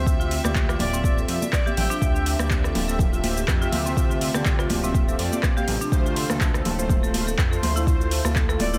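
Afro house at 123 BPM in D minor, this short excerpt has a driving, hypnotic feel, with a swung sixteenth-note groove resting on a single Dm11 chord. A deep electronic kick and an afro-pop kit of handclaps, metallic hi-hat, rim click and shaker enter at 0.1 seconds with a tape-tinged, small-room sound, and bright, high-tuned congas join at 0.4 seconds, sitting in the background. A smooth, saturated sawtooth bass carries the low end with sidechain pumping, joined by marimba arpeggios struck with medium hard mallets and mellow, brassy synth stabs that are chorused and echoed by delay. Behind them, a rich, earthy studio string section holds distant sustained chords, also pumping with the sidechain. An expressive synth lead with a soft attack, vibrato, phaser and lush chorus floats a melody above the groove at 0.8 seconds and returns at 7.6 seconds, all set in a digital ambience.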